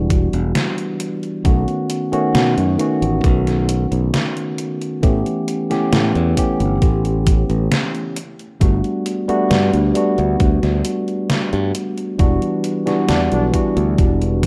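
A bright, clean tine electric piano sits up front in this nostalgic, woozy vaporwave fragment, cut from a longer piece, its chords touched by a subtle chorus and tape echo as they move from Em7 through B9, A9 and Gmaj7 before returning to Em7. Beneath it, a bright, growly fingered electric bass plays direct and up front, anchoring the low end throughout. The drums come from sampler-style electronics re-recorded in a large room: a thumpy, overdriven kick sits prominently, while a gated 80s digital drum machine adds hi-hat and a snare with a gated reverb tail at a lower level. Near the end, at 13.1 seconds, a clear flugelhorn with light vibrato slips in for a single brief note in the background, trailed by tape echo. The whole has the rough, hazy character of a home demo dubbed to cassette, with light reverb and digital ambience softening its edges.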